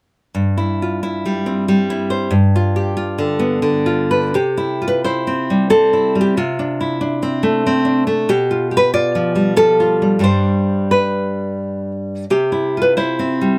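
A fingerpicked nylon-string guitar sits up front, its bright acoustic tone carrying this romantic classical piece alone in 3/4 with a rubato feel. The mood is nostalgic and tender, with light reverb giving the instrument a gentle sense of space. An opening passage moves from C/G to G7, then at 4.4 seconds a longer section unfolds through C, Dm7/C, G7/B and G before settling back on C at 12.3 seconds. The guitar ranges from G2 up to D5, and the passage ends at 13.6 seconds as a short cut from a longer work.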